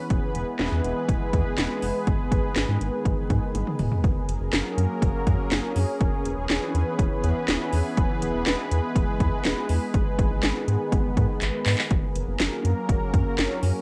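A punchy house drum kit leads this melancholic yet driving synth-pop excerpt at 122 BPM, its handclaps, metallic hats, cracking snare, kick and toms overdriven and sounding as if re-recorded in a large room, with fills at 3.5 and 11.4 seconds. Beneath it, a rubbery square bass plays low and bouncy, hollow and nasal in tone with a dark, resonant edge and a moving notch in its sound. A lush, thick pad of detuned sawtooth voices holds sustained chords up front, slow to bloom and long to fade, colored by chorus and a cassette-tape character. The harmony moves through E, G#m, F#add9 and C#m7/E before returning to E, with the section changing at 4.0 seconds. The excerpt carries the light reverb of a home recording on cassette.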